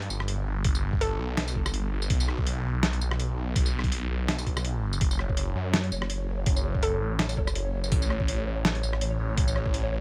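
Half-time drum and bass at 165 BPM in F# phrygian, this cinematic, heavy excerpt moves with a light swing and a half-time feel. A phased, detuned saw bass sits up front from the start, thick and swirling with saturation, spanning F#1 to F#2 under chords that shift from G to an unaccompanied stretch, then F#m and A. A gritty, pitched-down boom bap sampler-style kit of hi-hat, rim click, medium-tuned snare and tambourine carries a tape-warm, compressed edge in a small room, joined at 0.6 seconds by a thumpy electronic kick of the same sampled character. A hollow, bouncy square pluck flickers briefly on A4 with chorus and digital delay, returning around 6.8 seconds. From 5.0 seconds a soft, pulsing gated texture holds C#5 with chorus and its own reverb, adding a tempo-synced shimmer beneath the heavier parts.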